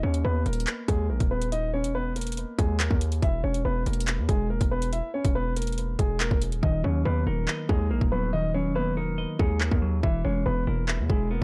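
A mellow grand piano opens this cold, dark hip hop drill excerpt in a half-time feel, its low-pass-filtered melody carried by digital delay, while a heavy, distorted 808-style bass with a saturated noise layer and fast attack sits up front beneath it. A moment later the electronic drill kit arrives, pairing a hard-clipped kick with metallic hi-hats and handclaps under a tape-tinged sheen. At 6.6 seconds the hi-hats fall silent as a clean, fingered semi-hollow electric guitar enters as accompaniment, compressed and softened by a low-pass filter. The piano keeps a smooth, vintage character throughout, and the sine-based bass stays aggressive and decaying. A digital ambience surrounds the mix, lending the production a dark, warm character.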